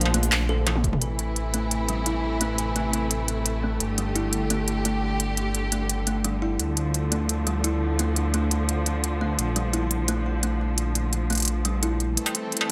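Half-time drum and bass in a tense, heavy mood, cut from a longer piece. It opens on a drop with a drum fill from 0.7 s, where a gritty, thumpy electronic kick drum is heard only briefly at 0.8 s. An up-front industrial drum kit with a clanging snare, crisp hats, handclaps, struck metal and toms drives it, underpinned by a deep, rumbling detuned saw bass. A lush, bowed string section holds sustained chords with sidechain pumping, while a woody kalimba plays short plucked arpeggios through delay and a filter sweep from 1.0 s, all moving through Bb, Am, Gsus2 and Dm in light digital ambience.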